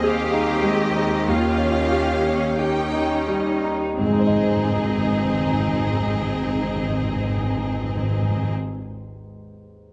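The pulse is flexible and rubato in a slow four, and it slows down over the first 4 seconds of this fragment from a longer romantic movement for piano and orchestra. The mood is passionate and lyrical. A clear, natural concert grand sits up front carrying the melody, its deep bass giving it weight. The violins also carry the melody with a smooth, even vibrato from the background, while a second, more distant violin line sings expressively above the rich violas, the focused double basses and a lush, bowed cello section. Timpani struck with hard mallets on calf heads enter at 4.0 seconds, articulate and suggesting a small room, and the strings and drums fall away by 8.6 seconds to leave the piano sounding alone. The close, detailed miking sits inside a moderate scoring stage reverb.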